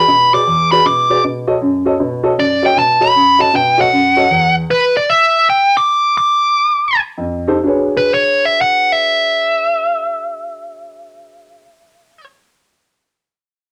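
Gritty and rollicking, this short cut from a longer blues piece swings in 4/4 at a tempo between 125 and 156 BPM, centred on E mixolydian. An electric lead guitar carries the melody from start to finish, its overdriven, picked tone dark yet smooth and sitting up front, ranging from B4 up to D6. Beside it, an upright piano plays accompaniment in two stretches, from 0.1 to 4.6 seconds and again from 7.2 to 11.6 seconds, with a woody, mellow, vintage character and a range from E2 to D#5. The harmony moves from E7 to B7, breaks off into a chordless stretch where the tempo slows between 4.3 and 7.6 seconds, then returns through F9 to E13 as a new section begins. A moderate studio reverb gives both parts a sense of room.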